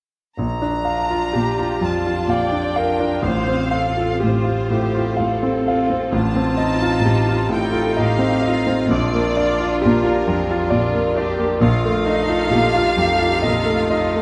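A clear concert grand piano sits up front and carries the melody from 0.4 seconds, its vintage tone smooth across a range that reaches down into a deep bass. This passionate, lyrical passage from a romantic classical movement for piano and orchestra moves in a rubato triple metre. A rich chamber violin section shares the melody in its upper register, bowed with even vibrato, while the cello section supplies a bass line full of soft attacks, portamento and expressive phrasing. A second violin line enters at 0.9 seconds and a viola section joins at 1.3 seconds with a focused, smooth-topped accompaniment, both set in the background of the ensemble. The harmony rocks between the home chord and its dominant, and a wet recital hall reverb surrounds the music until this cut from a longer piece ends at 14.2 seconds.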